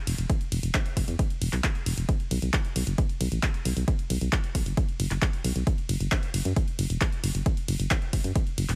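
Uplifting and soaring in spirit, this short cut from a longer uplifting trance piece moves at 134 BPM in a straight 4/4, tuned slightly sharp to A4 = 445 Hz. A solid FM bass runs through the whole clip, from 0.1 to 8.8 seconds, sitting up front with a round, mellow, digital tone, a fast attack and a decaying tail, moving between E1 and F#2 under a sidechain pumping effect. An analog drum machine supplies handclaps, hi-hat and ride cymbal across the same span, its dry sound roughened by overdrive and a small room ambience. A punchy electronic kick drum enters at 0.3 seconds and holds until 8.4 seconds, overdriven and placed up front with the same touch of small room around it. The overall mix is dry, with little reverb, giving the groove a tight, direct feel.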